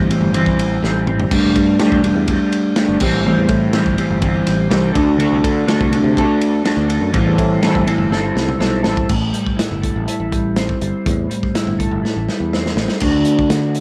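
Hypnotic and mysterious, this psychedelic rock passage, cut from a longer piece, rides a straight 4/4 groove in light studio reverb, built around a mellow, clean, fingered electric guitar riff placed up front and colored by a rotary speaker. Beneath it, a sustaining fretless electric bass adds a growly, direct low end, while a crunchy breakbeat kit with dark cymbals, a tight kick and a gritty, saturated, rolled-off character plays from 0.1 seconds. Drum fills mark 0.8, 8.1 and 12.0 seconds as the harmony circles Am7, Gsus2 and D, with a new section arriving at 9.1 seconds.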